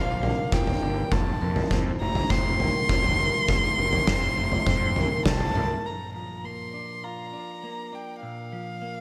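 Cinematic and cathartic, this post-rock passage is led by a dark, intimate violin played sul tasto with an airy bow and light vibrato, its tape-echoed melody sitting up front over twangy, clean electric guitar arpeggios and ringing vibraphone arpeggios with a fast motor vibrato, both also echoed and tucked into the background. An oversized, low-tuned drum kit with a punchy kick, a medium-tuned snare and toms sounds saturated and gritty in a bright stone room, while a fuzz-overdriven picked bass drives underneath as the harmony moves from Bb to F. The drums and bass drop out at 5.7 seconds, and the vibraphone soon after, leaving violin and guitar alone as the chord returns to Bb in a fairly dry mix.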